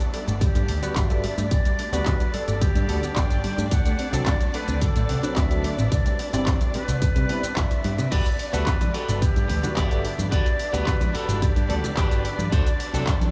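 Polished by a light digital ambience, this feel-good, groovy nu-disco excerpt in G major moves at 109 BPM, with a punchy, up-front electronic kick and a layered pop kit of crash, handclaps, warm hats and shaker joined by a bright, envelope-filtered picked bass. Dark, woody strings, a barky tine electric piano with phaser and a round sawtooth pluck arpeggio that stops at 8.0 s sit in the background beneath a pure, straight-toned concert flute melody. A twangy, slightly broken-up electric guitar riff arrives at 8.1 s, followed by low-tuned congas and a clean electric guitar fill at 11.4 s.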